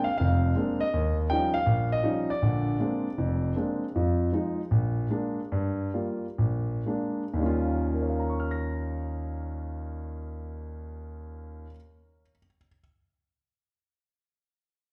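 A moderate, large-studio reverb surrounds an intimate, up-front concert grand piano whose audible action noise and deep bass give this brief solo jazz passage, lifted from a longer piece, a relaxed, vintage glow. The piano plays alone throughout its 12.8 seconds, its smooth tone spanning low bass to the upper register as it moves through rich ninth and seventh chords with a swung, rubato feel. The pulse slows between 4.0 and 7.4 seconds before the harmony settles back onto a ninth chord.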